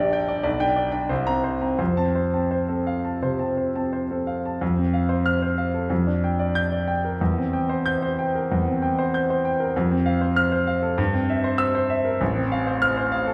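A clear concert grand piano plays alone in this agitated, passionate virtuoso piano study in F major, a short cut from a longer classical piece, moving in a rubato 4/4 at roughly 82-99 BPM and spanning A1 to G6 with a deep bass and a natural, up-front tone. The harmony moves through G/B and Bbsus2/C to F before a new passage begins at 4.6 seconds, turning through G7 over F and C7 chords and settling on F/A near 12.2 seconds. A wet, large studio reverb places the listener further back in the room.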